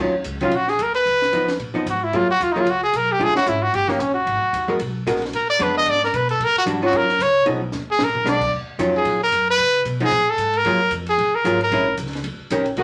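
A short, late-night clip of small-group swing and bop, heard in a wet club reverb that gives the players a close, nightclub sense of space. A brilliant, forceful trumpet enters at 0.4 seconds and takes the solo up front, its punchy, present tone colored by light vibrato and scooped notes in a clear jazz style. Beside it, a clean, compressed hollow-body archtop guitar, miked and amplified, comps with a dark, picked sound over minor chords rich in ninths and altered dominants. Underneath, a woody, thumpy upright bass with steel strings is plucked, and a compact cocktail drum kit adds a dry, acoustic pulse of dark cymbals, a high-tuned snare and a punchy kick. The drums break into a short fill from 7.7 to 8.3 seconds before the chord cycle begins again, keeping the swing moving until the cut at 12.8 seconds.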